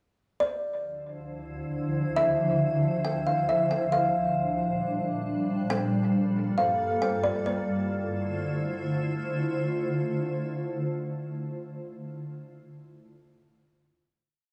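A woody, mellow kalimba opens the piece at 0.4 s, picking out a sparse looping melody that repeats like a sampled loop and rings through a tape echo. At 1.2 s a granular cloud pad enters beneath it with a slow attack, holding blurred, evolving chords that move from Dm9 through Bb6 and Gm9. This hazy, melancholic stretch of atmospheric cloud-rap sits in a half-time feel as a breakdown, with both parts placed up front. The pad settles onto a final Dm9 at 7.5 s, and the kalimba falls away shortly after, letting the pad's full-bodied sustain and built-in reverb carry the close. Light reverb and small-room ambience frame a dry, gritty sound with a cassette-tape character.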